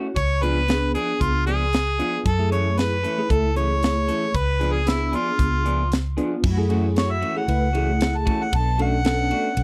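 An overdriven, smooth-topped harmonica leads this brooding, mournful straight-eighth soul blues in F# minor at 115 BPM, soloing from 6.4 seconds over a bell-like tine electric piano with phaser, twangy, slightly broken-up guitar stabs through a small old amp, a round, foam-muted vintage fingered bass, and a tight funk kit with bright cymbals and a high-tuned snare, while a dark, distant string section with vibrato and portamento joins with lush sustained chords at 6.4 seconds, captured in a dry, close 1970s-style studio sound with light reverb.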